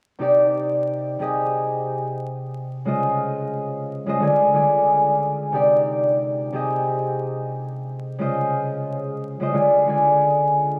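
A concert harp opens at 0.2 seconds, ringing and up front with a thumb-plucked, acoustic tone, carrying a reflective, moody hip hop accompaniment in C minor at 90 BPM with a 16th-note swing. Running through Cmadd9, Abmaj7/C, Dbmaj7 and Ddim twice over, the harp is filtered and colored by cassette tape until it stops at 10.8 seconds. The dreamy mix is soaked in a lush hall reverb and dusted with vinyl crackle, and the passage is cut from a longer piece.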